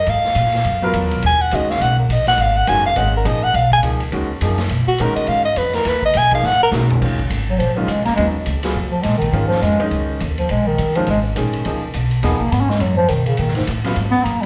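A close-miked soprano saxophone opens this excerpt from a longer modal jazz piece, its clear, soft-attacked solo sitting up front with a slapback echo until 6.7 seconds. Beneath it, a woody, thumpy upright bass on gut strings plays pizzicato, while a distant big-band drum kit swings across crash, ride, hi-hat, snare, toms and a punchy kick, its dark cymbals and rolled-off top lending a roomy backdrop. A concert grand piano with deep bass and an open tone supplies accompaniment, also touched by slapback echo, over a harmony that moves from G#m9 to Db9sus4. After a drum fill at 6.4 seconds, a mellow bass clarinet takes the solo from 7.5 seconds, its vibrato-laden voice both roomy and up front. The whole performance carries a spiritual, intense mood, heard as a live gig through the venue's PA with moderate club reverb.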